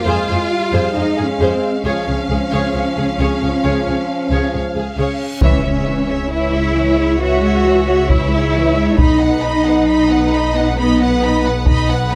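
A lush string orchestra opens this cinematic, epic film-score fragment, with a focused violin melody, a second violin line set further back, a smooth viola accompaniment and a bass foundation of up-front double basses and close cellos. A mellow French horn section holds sustained chords in the distance behind them, moving from F minor to D-flat at a slow 67 BPM in 4/4. At 5.0 s a huge, bright reverse cymbal rises in the background and lands on an impact as the music turns to C-sharp minor at 5.4 s. There, heavy-sticked taiko drums enter and carry on to the end, while round, soft-mallet timpani sound only briefly until 6.7 s. The mood is relentless and dramatic, and the vibrato-rich bowed sections sit in a moderate scoring-stage reverb captured by close, detailed microphones.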